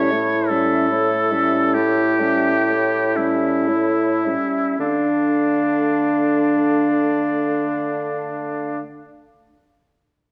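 A melancholic, elegiac slow romantic movement for wind quintet in a rubato 12/8 opens with all five players together, the clear oboe's second line and the mellow bassoon's bass up front, a hollow flute melody with vibrato set back, and a soft-attacked clarinet and distant, roomy French horn as accompaniment, easing from an A7 chord toward Dm at 4.8 seconds in a wet recital hall with a dark, warm production.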